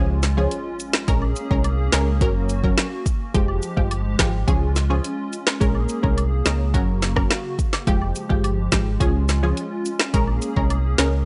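Dancehall at 106 BPM in a straight 4/4, sultry and hypnotic, built on a cycling Db, Bbm7, Gb and Fmadd9 progression in a dry, gritty recording with little reverb. Up front, an electronic afro-pop kit with a deep kick, woody snare, dark hats and rim clicks sits beside a deep, full sine sub bass with octave, while punchy, detuned sawtooth chord stabs with a filter pluck shimmer through chorus and phaser. Behind them, a hollow, flute-like vintage pad warbles with ensemble chorus and sidechain pumping, close acoustic cabasa and woodblock tick in the background, and a very quiet electronic impact sounds at 0.7 seconds in this short cut from a longer piece.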